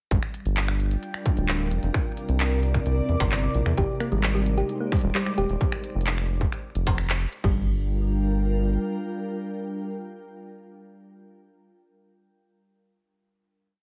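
IDM at 131 BPM in G phrygian, cerebral and intricate, where a distorted, up-front electronic kick and a glitched industrial kit of crisp hats, snaps, claps, crash and struck metal drive a broken, ever-changing beat under a round, deep analog bass riff and slowly shifting chords from a glassy, ethereal FM pad with vintage sampler grit, while a reversed, dreamy texture holds a high note in the background and a tine-like, nasal thumb-piano pluck enters at 3.8 seconds with a 7-step loop drifting against the bar, before the groove gives way to a final Gm7 chord at 7.4 seconds.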